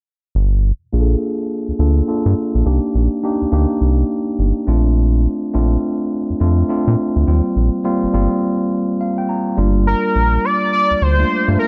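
Upbeat and bouncy, this swung R&B excerpt sets a deep, round analog bass under a mellow tine electric piano, its low-pass filter sweeping over Gm9, Cm9, Bbmaj9 and Eb69 chords, with a piano fill in a break at 8.7 seconds before a bold, retro octave-doubled lead with chorus and vibrato enters at 9.9 seconds, the whole mix dry and up front.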